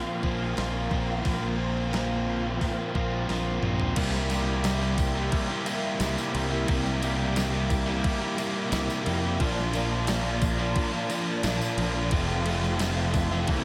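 A swirling, phased string machine holds sustained chords in the background of this dreamy, hazy shoegaze and dream pop excerpt, joined from the start by a very quiet, twangy clean guitar playing arpeggios and two overdriven guitar riffs, one up front with lush chorus and one biting in the background with reverse reverb, while a round, punchy fuzz bass and a thumpy 12-bit drum machine with a small-room character arrive at 0.2 s, a drum fill at 3.3 s leads into the second section, and a jingly tambourine enters at 4.1 s, the whole mix sitting in a huge ambient reverb.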